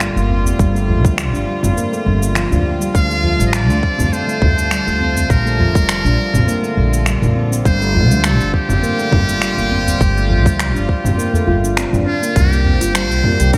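The brilliant, buzzy muted trumpet steps in at 3.0 seconds with a smooth-topped classical solo melody, floating over ringing, airy handpan arpeggios and a reedy chamber string section whose sustained, gut-toned chords pump with a sidechain. This mystical, meditative organic downtempo cut in G minor moves at 102 BPM with a light sixteenth-note swing, anchored by a woody, growly pizzicato upright bass and a tight, overdriven electronic kick, while crisp hats, cabasa, finger snaps and toms from an organic electronic kit mingle with a small udu tucked in the background. The dreamy mix is soaked in plate reverb, with analog delay trailing the handpan and tape echo following the trumpet as the chords drift from Gm7 toward a closing Csus2.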